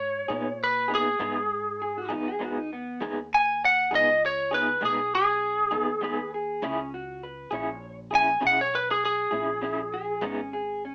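Slow blues in 12/8 at 66 BPM, set in G# minor with a soulful, mournful mood in this short cut from a longer piece. A lightly driven lead guitar carries the melody from the start, its bright, twangy, slightly broken-up tone sitting up front between G#4 and G#5. An electric guitar through a small old amp enters at 0.3 s with a picked, lo-fi accompaniment colored by tremolo, and a second guitar through a similar amp adds a fingered line from 1.8 s. Underneath, a pizzicato upright bass with steel strings gives a woody low end, mixed well back. The harmony moves from G#m to C#m at 6.6 s and returns to G#m, all heard in moderate studio reverb through a rough home-demo mix with a small-speaker sound.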